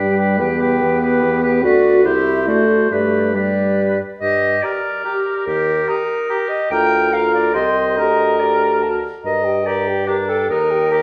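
Heard in a reverberant recital hall, this lively, spirited excerpt of a quick classical-period wind quintet movement in 3/4 at 144 BPM opens in G major and turns to G minor at 4.2 seconds, with a mellow silver flute carrying the high melody with tongued notes and vibrato over a warm oboe second line, bright clarinet and clear French horn accompaniment, and a dark, up-front bassoon holding the bass.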